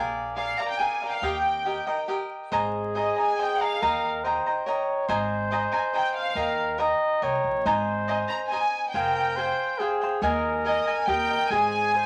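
Festive and proud, this short fragment of mariachi-flavoured Mexican folk moves at 140 BPM in a straight 3/4 in A-flat major. A crisp, picked cavaquinho and a woody, thumpy pizzicato upright bass on gut strings lay down the accompaniment from the very start. At 0.4 seconds a studio violin section takes the melody, bowed sul tasto with a soft attack and a pure, floating, smooth top that sits up front. A mellow trumpet in a classical style joins at 2.5 seconds with a second line, also placed up front. The harmony moves from Bb7 through alternating Eb and Abadd9 chords, passing Fmadd9 and Ebsus4 before settling on Ab. A moderate studio reverb and a layer of vinyl crackle colour the sound.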